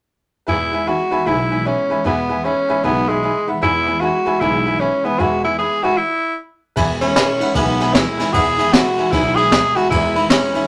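A raspy, gritty tenor saxophone carries the melody up front with scooped notes and light vibrato in this retro, rollicking rockabilly excerpt in E major at 153 BPM with a swung feel, backed by jangly tack piano, bright picked steel-string acoustic guitar and growly pizzicato upright bass, all halting for a stop at 6.0 seconds before a brushed drum kit with a boomy kick and high-tuned snare joins at 6.8 seconds in a moderate studio room.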